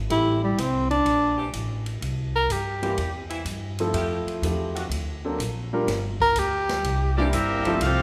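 A swinging big-band groove, set by a drum kit with a punchy kick and a woody, growly pizzicato upright bass, carries this brassy cut from a longer jazz piece. A tenor saxophone with scooped notes and vibrato takes the lead up front over a piano with audible action noise, while a tight saxophone section holds sustained chords in the background, all in a reverberant hall. The tenor drops out at 3.3 seconds and returns briefly, then at 7.2 seconds a brilliant trumpet section seizes the melody with a loose, close-miked trombone section beneath it.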